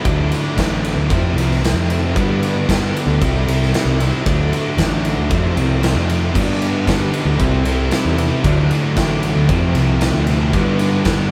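With light reverb and the feel of a band playing live in one room, this restless, bittersweet stretch of quiet-loud alternative rock in G mixolydian moves at 115 BPM in a straight 4/4 over a cycling D, F, G, C progression. A bright, high-gain distorted guitar and a thick fuzz guitar set further back play the riff, while an overdriven, round fuzz bass sits up front beside an acoustic drum kit in a stone-room ambience with a punchy kick, medium-tuned snare, and bright crash and ride. At 6.3 s a very quiet, double-tracked fuzz guitar joins the riff.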